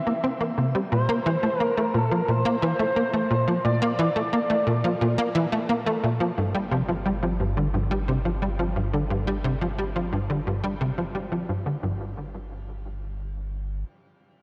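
A straight 4/4 pulse at 88 BPM is set by a tight sequencer bass riff, punchy and nasal, its filter-plucked sawtooth and square tones decaying and sitting up front, coated in ensemble chorus, shimmer reverb and analog delay. This is hypnotic, mysterious space music in G dorian, tuned to A4 = 445 Hz, taken from a longer piece. Over the opening chords of C and Bb, a smooth, expressive synth lead sings a sustained melody with vibrato until 5.7 seconds, blending sawtooth and triangle tones through analog chorus, shimmer reverb and analog delay. At 6.4 seconds, as the harmony settles on G5, a deep, round sine sub bass enters, sustained and fading out through the middle stretch, while the evolving sequencer riff keeps driving until 12.1 seconds. The closing moments drop to unharmonized ground, all set in a lush hall reverb with a dark, warm production.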